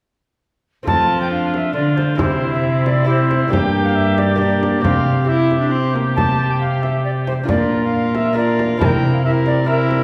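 A mellow, airy tenor recorder carries the melody with a tongued chiff and expressive vibrato in this courtly, festive renaissance-style consort dance in 3/4 at 136 BPM, cut from a longer piece. The lute enters alone at 0.8 s, delicate and fingerpicked on gut double strings in the background, before the distant cor anglais adds a second line, a gut-strung viola fills the harmony, and a dark, up-front cello holds the bass over chords moving from F through C, Gm and Bb to C7. A small, bright frame drum played with soft hands sits close and dry, while the wet reverb of a recital hall surrounds the consort.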